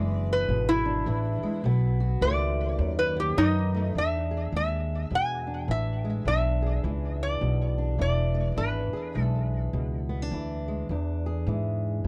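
A nasal, metallic resonator guitar played with a steel bar and fingerpicks and touched with tape echo carries the melody up front over a dark, boxy, fingerpicked ladder-braced acoustic guitar and a growly pizzicato upright bass in this gritty, rollicking, swung acoustic country blues cut from a longer piece, moving from E7 to B7 and back to E7 at 4.0 seconds before the slide guitar drops out at 9.5 seconds, heard in a dry, close 1970s-style studio sound.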